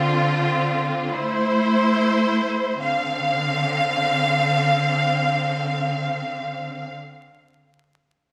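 This menacing, hard-hitting hip hop cut moves in free time in D minor, carried entirely by an up-front bowed string section that holds sustained chords from 0.0 to 6.9 s, shifting from Dm7 to Am and back to Dm7 at 2.8 s. The ensemble sounds lush and expressive, with vibrato, portamento and a smooth top. A bright 1980s-style digital sheen, a wet hall reverb lasting 1.7 s and a layer of vinyl crackle surround the strings.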